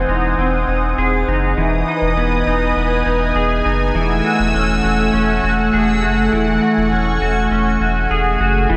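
Dream pop with an ethereal, dreamy mood, this short cut from a longer piece sets a lush, detuned sawtooth pad holding sustained chords up front against clean, twangy electric guitar arpeggios carried by analog chorus and delay, while a round, deep analog bass anchors the low end. Between 5.4 and 6.8 seconds a reversed, granular texture surfaces faintly in the background. The whole mix is soaked in a long hall reverb as the harmony drifts from G#7/E through Emaj7 to F#m9/E.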